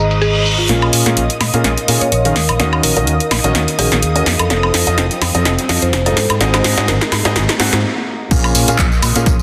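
Energetic yet bittersweet, this piano house excerpt in Bb minor at 126 BPM sets a clear, woody upright piano riff under a filter sweep, alongside a growly fingered electric bass, a silky analog string pad, a warbling, nostalgic tape-like pad, a round mallet-like synth pluck melody, a very quiet reverse cymbal and riser, and an up-front house drum kit with a punchy snare and handclaps, building through a drum fill to a stop at 7.8 seconds before a punchy electronic kick lands with the drop at 8.3 seconds, while the pads, piano and bass breathe with sidechain pumping in a lush hall.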